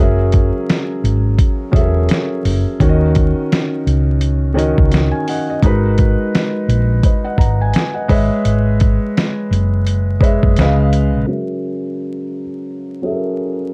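Lo-fi hip hop with a melancholic, nostalgic mood and a swung feel, built on a felt-muted upright piano that sounds soft, mellow and intimate through cassette tape coloring and a low-pass filter. Beneath it, a woody fretless electric bass adds a round, hollow-body tone, while a dusty sampler-style drum kit enters at 0.3 seconds with a thumpy kick, a medium-tuned snare and hi-hat, compressed and gritty with overdrive. The chords move from F#9 through D#m7, G#m7 and C#m9/G#, and after the bass and drums stop near 11.2 seconds, the piano carries on alone under a filter sweep until 13.7 seconds, all set in a dark production with light reverb and vinyl crackle.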